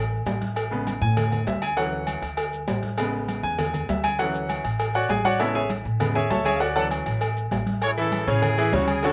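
A driving straight 4/4 salsa groove at 198 BPM opens this joyful, danceable excerpt in A major, with a woody, thumpy pizzicato upright bass, thick-skinned background congas, ringing timbales and agogo bells, grainy maracas and a round, low cowbell carrying a slapback echo, while a brilliant, up-front grand piano enters at 0.7 s to solo over alternating Amaj7 and Dmaj7 chords until a punchy, smooth-topped horn section takes the melody at 7.8 s.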